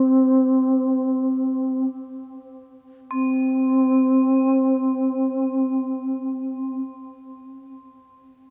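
Floating in free time, this brief fragment of meditative, haunting world music centers on a bass flute holding the melody around C4, its airy tone marked by vibrato and a crisp attack. Far beneath it in level, crotales struck with brass mallets add a high, shimmering, bell-like ringing texture from C6 to G6, and both parts sound together from the start to 6.8 seconds, with a new section arriving at 3.1 seconds. A huge, wet reverb and the warbling pitch drift of worn cassette tape wrap the recording in a hazy, aged atmosphere.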